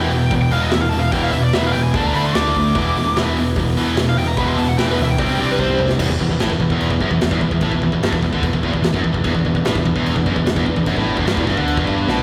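A rough rehearsal-room recording drenched in a long church reverb gives this aggressive, epic heavy metal fragment, cut from a longer piece, a cavernous sheen. At 148 BPM in a straight 4/4 feel in E minor, a scooped, high-gain rhythm guitar sits up front churning out the riff, joined by a tight distorted guitar playing a riff further back. An overdriven picked electric bass adds a growly, punchy low end, while a big acoustic rock kit with a boomy kick, medium-tuned snare, hi-hat, crash and toms drives things along. Behind them, a pipe organ on light flute stops holds sustained chords in a romantic voicing that sparkles over the grind. A picked, high-gain lead guitar solos through the opening until 5.9 seconds, a drum fill at 5.6 seconds leads into the next section at 6.0, and the lead returns only for a brief moment at the very end.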